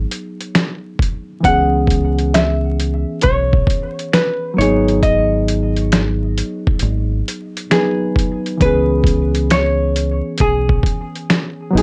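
Vinyl crackle and light reverb wrap this hazy, nostalgic lo-fi hip hop excerpt, where a reedy, barky electric piano, softened by a low-pass filter, and a round, punchy dub bass move between G#m7 and C#m7 over a swung groove. Compressed, pitched-down sampler drums with overdrive add a thumpy kick, a medium-tuned snare, hi-hat and finger snaps. At 1.4 s a dark, clean hollow-body jazz guitar takes the melody, filtered and trailed by analog delay.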